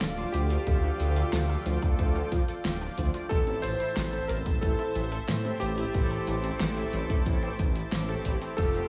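Nocturnal and moody, this synthwave excerpt carries a clangy, vintage electric grand piano melody with a very quiet, dreamy second line from an FM electric piano with a soft pad layer, over a thick detuned saw bass up front, a lush chorused pad pumping to the sidechain, wave-folded unison pluck arpeggios and dark, brassy synth stabs in the background, a tape-warm pop drum kit with a fat snare and metallic hats, and a punchy electronic kick that enters at 0.7 s, set in light reverb over a move from Dm to Am.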